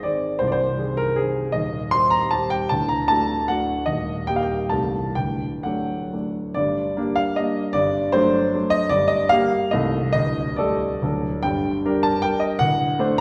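Dotted rhythms drive this romantic triple-time dance in 3/4, its rubato tempo stretching between 118 and 170 BPM. A solo grand piano carries the whole piece in G minor, spanning C1 to C6 with a smooth, vintage tone that sits up front. The mood is nostalgic yet capricious. The opening passage moves through Ab/C, Cm/Eb, D and Eb before settling on D around 5.2 seconds. At 6.6 seconds a new section begins on Gm and passes through D7/G, Adim/C and a Dsus4 that resolves to D, then returns to Gm and closes on D7. The piano rings in a wet scoring-stage reverb with the spacious air of a church or concert hall, and this short passage is cut from a longer piece.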